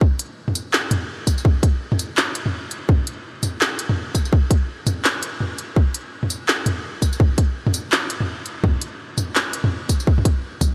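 A hard-clipped electronic kick drum sits up front in this heavy, dark drum and bass passage, its low end trimmed by a high-pass filter and running the full 10.7 seconds of the drop. Beside it, an overdriven kit of handclaps, crisp hi-hats, tambourine and toms enters at 0.2 seconds, its produced sound re-recorded in a large room and placed up front, though it sits lower in level than the kick. The groove moves at 167 BPM in 4/4 with a half-time feel and a 59% swing on the sixteenths. A light reverb surrounds the mix, and faint lossy compression artefacts are audible. Cut from a longer piece, the whole passage is a single drop that stays focused on its percussion throughout.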